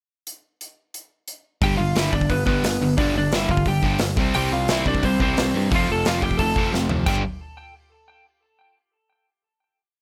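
A big rock drum kit opens alone with a pickup bar, its bright cymbals, medium-tuned snare and boomy kick sitting up front in a fast punk groove. At 1.6 seconds the band crashes in on G: a bright, growly electric bass drives eighth notes underneath, while an overdriven guitar and a sludgy distorted guitar chug palm-muted eighth notes in the background. Over the top, a dark, slightly broken-up lead guitar with tape echo plays a motif-based melody, partly doubled in octaves. At 4.4 seconds a double-tracked fuzz guitar joins with ringing chords as the harmony moves through C5 and F, and a drum fill at 6.7 seconds sets up the final G5 chord. This short, rowdy, rebellious punk rock piece in G mixolydian runs at 176 BPM in straight 4/4, with a dry, close sound.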